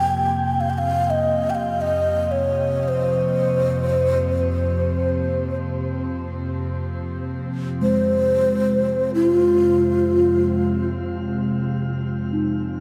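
Drenched in a huge ambient reverb, this haunting, meditative world excerpt in free time and F minor sets a breathy, mellow low xiao, close-miked and up front with vibrato, shimmer reverb and a diffuse ambient delay, over a calm organ-like drone with ensemble chorus and a ringing bronze singing bowl whose metallic tone beats slowly, the xiao falling silent at 10.9 seconds while drone and bowl carry on to 12.8 seconds.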